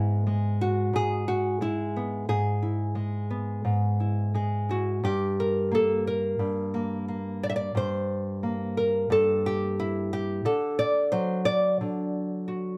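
Folk fingerstyle in a reflective, wistful mood at 89 BPM in 4/4, this cut from a longer piece features a solo nylon-string guitar, warm, small and up front, fingerpicked across a span from G2 to E5 as it moves from E/G# to a Gmadd9 at 5.0 seconds and settles on D at 10.4 seconds, all within a reverberant studio room heard from further back.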